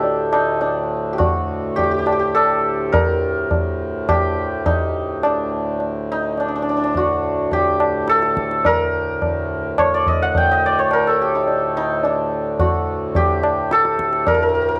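Hindustani classical music in raga bhairav on D, radiant and devotional, moves in a straight 5/4 at 105 BPM and speeds up across this short cut from a longer piece, with a brief opening passage giving way to a new section at 2.9 seconds. A shimmering, ringing hammered santur carries the melody up front between D4 and G5, while a reedy, nasal hand-pumped harmonium breathes a low drone from D2 to A2 and a high-tuned, close tabla with a short ring keeps the pulse until 14.5 seconds. Moderate spring reverb and small-room ambience give the whole a gentle glow.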